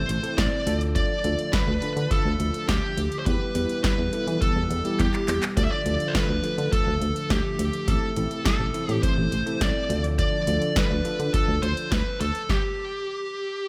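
Lightly reverberant and driving, this nocturnal synth-pop fragment puts a bright, distorted high-gain lead guitar melody with tape echo up front over a bell-like tine electric piano with lush chorus, mellow sawtooth string-machine cellos in the background, a round FM bass, and an analog drum machine with deep kick, punchy snare, metallic hats and handclaps that plays a fill at 5.0 s before a stop at 12.5 s leaves the guitar sounding alone until 13.7 s.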